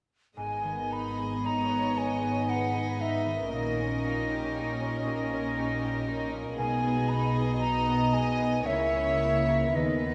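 Classical in style, this slow romantic movement for symphony orchestra unfolds in G# minor at 58 BPM in 3/4, its uneven, rubato beats carrying a melancholic, yearning mood. It is cut from a longer piece. From 0.4 seconds the ringing harp ripples arpeggios in the background, a dark viola section supplies intimate accompaniment, and the cello and double bass sections hold the bass, all strings bowed sul tasto with soft attacks or light vibrato. A rich, floating violin section and an airy, crisp silver flute carry second lines, the flute sitting up front and loudest with a straight tone despite its distant placement. At 1.4 seconds a warm, close violin section enters with the melody, sung with light vibrato through the chords G#m, D#7/A#, G#m/B and A#dim/C#. Moderate scoring stage reverb gives the ensemble a spacious bloom.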